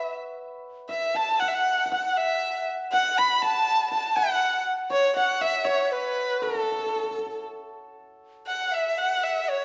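This is a short passage of Chinese traditional music for a chamber ensemble, cut from a longer piece, with a mood both festive and pastoral. It moves at a slow, rubato 59 BPM in 2/4 and sits in an A gong mode. A dark, intimate erhu carries the melody up front and close, played by one bowed player with vibrato, portamento, a soft attack and an airy bow. Behind it, a mellow bamboo dizi with a buzzing membrane and a hollow tone adds a second line with its own vibrato. A bright, shimmering hammered dulcimer offers a ringing second line as well, and all three parts play from 0.0 to 9.6 seconds in the same register while a recital hall reverb surrounds them. A new section begins at 8.5 seconds, shortly before the passage ends.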